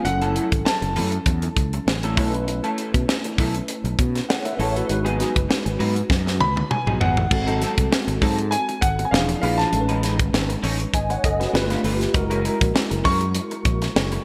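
Nocturnal and bittersweet, this polished 1980s jazz-funk pop clip, cut from a longer piece, moves with a lightly swung sixteenth-note feel under a bright digital sheen. A tight funk drum kit sits up front with a high-tuned snare, tight kick and rolled-off top, its gated reverb framing crash, hi-hat, toms and a fill from 6.1 to 7.3 seconds. Beneath it, a fretless electric bass sounds warm, punchy and direct. A tine electric piano supplies clean, ensemble-chorused accompaniment, while an electric guitar through a small old amp plays a slightly broken-up, compressed riff with its own analog chorus. A clear, intimate grand piano carries the melody high in its range, with audible action noise: it plays briefly at the opening, then returns at 6.4 seconds. The harmony drifts from F#m7 and B9sus4 into richer colours such as G#7b9 and Amaj9#11 before settling on F#9, all in a small, lightly reverberant room.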